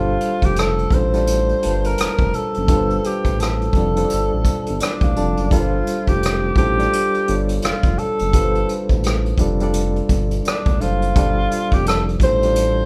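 A breathy tenor saxophone carries the melody up front, its subtone, scooped notes and gentle vibrato giving this late-night, soulful neo-soul and R&B excerpt an intimate, whispered quality. Beneath it, a reedy electric piano with light overdrive and fast tremolo supplies the accompaniment and plays a short fill from 4.5 to 5.5 seconds, while a smooth, mellow synth bass holds sustained low notes. An acoustic drum kit, played with bundle sticks, adds hi-hat, rim click and a punchy kick over a swung sixteenth-note feel, all set in light reverb.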